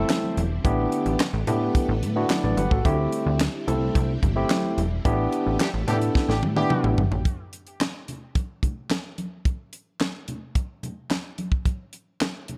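A dark, studio-reverbed mix carries this slick, late-night early-eighties boogie funk excerpt at 109 BPM, where a barky, lightly overdriven tine electric piano and a punchy, plucky analog bass ride over shimmering string-machine violins and a tight, dry drum kit with handclaps and background congas, a brief horn line with analog delay slips in at 5.6 seconds during a band accent, and from 7.3 seconds only the drums and congas carry on.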